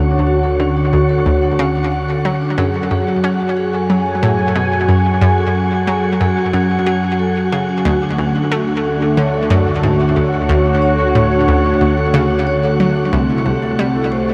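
A straight 4/4 pulse at 91 BPM carries this luminous, cosmic fragment of ambient, sequencer-driven space music in D lydian, where a bright, up-front analog pluck riff with chorus and delay rides over a mellow, detuned analog drone bass, while a resonant sweeping pad holds evolving chords with chorus, a metallic vibraphone rings out delayed arpeggios with slow motor vibrato, and an airy, breathy wind-like noise texture hovers in its own reverb, the whole mix bathed in a wet shimmer reverb as the harmony moves from Dmaj7 through F#madd9 and back before settling on C6 at 13.1 s.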